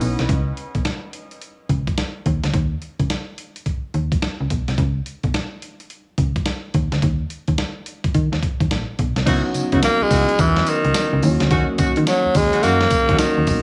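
A raspy, forceful tenor saxophone takes the melody at 9.8 seconds, sitting up front with a bright, gritty edge, light vibrato and a touch of tape echo in a pop style. This punchy, confident R&B piece in the new jack swing vein rides a swung sixteenth-note feel. A gritty, compressed sampler-style drum kit plays throughout, with a thumpy kick, a medium-tuned snare, hi-hat, tambourine and crash cymbal. A snappy, digital FM slap-like bass with a metallic, decaying attack sits up front beside it from start to finish. A clean tine electric piano with fast tremolo through a combo amp appears briefly at the very start and returns at 9.3 seconds, where a warm, smooth-topped jazz-style horn section adds tape-echoed stabs over C#m11 and D#m7 chords. Light reverb gives the groove a studio sheen, and the music is cut from a longer piece.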